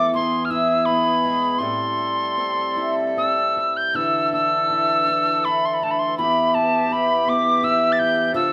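In a loose, rubato three-four, this Celtic slow air drifts with a longing, mournful air across a brief fragment cut from a longer piece. A wooden whistle carries the melody up front, its pure, mellow tone touched with vibrato, a crisp chiffing attack and rolled-off highs. Beneath it, a fingerpicked acoustic guitar adds a boxy, swing-inflected accompaniment, while a woodwind section holds sustained chords in a classical ensemble style with light vibrato and a warm blend. The harmony moves from E to Am7 before the second phrase arrives at 4.0 seconds on Dsus2, settling onto Em at 6.2 seconds. The band plays live together in one room, wrapped in a moderate large-studio reverb that lends the performance a spacious glow.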